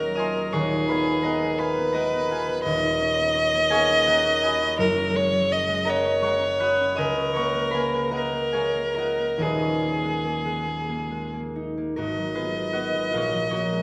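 Impressionist classical music for violin and harp, wistful and hazy, drifts in a rubato 6/8 at about 45-59 BPM in G# dorian, tuned to A4 = 445 Hz. A single up-front violin carries the melody in a rich, smooth bowed tone with vibrato, while a bright, ringing concert harp, fingerpicked and equally close, spans a broad register beneath it through chords such as D#m9, F#add9 and C#69. A moderate recital hall reverb surrounds the duo, and the passage shifts into a new section on G#m9 at 12.0 seconds before this excerpt from a longer piece cuts off at 13.8 seconds.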